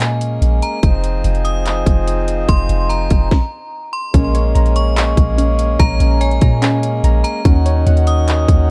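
A ringing, inharmonic FM bell melody with chorus and delay floats over reedy, breathing harmonium chords, a round sine-toned 808-style bass and an up-front trap kit with hard-clipped kick, sharp snare, metallic hats and handclaps, all moving in a half-time 145 BPM feel in Bb minor. This atmospheric cloud-rap cut is spacious and ethereal, with dark digital ambience around it. After a stop from 3.3 to 4.1 seconds, a warbling, lo-fi detuned sawtooth pluck joins with arpeggios in the background over chords that move from Bbm7 to Ebm7.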